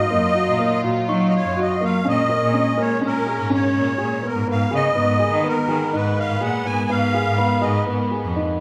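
Set in the wet reverb of a church or concert hall, this urgent, restless fragment of contemporary chamber music moves at 124 BPM in an uneven 5/4 over chords drifting from Ebmadd9/Gb through Bbm7 to Abmadd9. Up front, a shimmering musette accordion carries the melody above a biting, earthy solo cello bass, while a dark, mellow grand piano plays arpeggios and a studio string section holds sustained chords with a gut-string, period-style glow. In the background, a bell-like glockenspiel struck with soft plastic mallets rings briefly at 1.1 seconds and again at 7.4 seconds.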